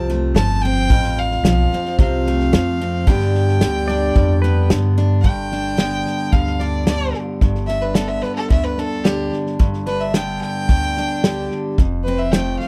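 Honky-tonk and classic country at an easygoing, heartfelt 110 BPM, where a bright, up-front picked steel-string acoustic guitar, a woody, thumpy pizzicato upright bass and a punchy natural drum kit carry a distant, earthy bowed fiddle melody that turns into a solo from 5.2 s, while a twangy pedal steel guitar adds a brief second line at 3.9 s, all captured in a dry, close 1970s-style studio sound.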